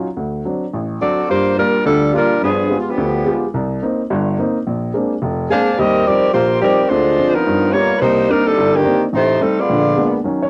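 Swinging and sultry, this brisk 214 BPM jazz fragment in G minor pairs a woody, intimate upright piano, its action noise audible as it comps throughout, with a tight, dark saxophone section whose vibrato-laden, smooth-topped melody comes in at 1.0 seconds, pauses after 3.4 seconds and returns at 5.5 seconds, both parts sitting up front with a cassette-tape haze in a small, wet booth over rich changes such as Gm7, G7b9, Eb69 and G7alt.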